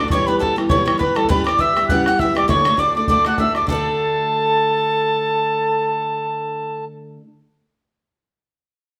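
Recorded live in one room under a wet large-studio reverb, this bright, cheerful cut from a longer Celtic reel puts a pure, soft-attacked wooden whistle up front on the melody, with an airy, tongued wooden flute on a second line and a woody, double-strung mandolin tucked in the background on another, all over a picked steel-string acoustic guitar accompaniment and a damped, tight bodhran that stops at 3.8 s.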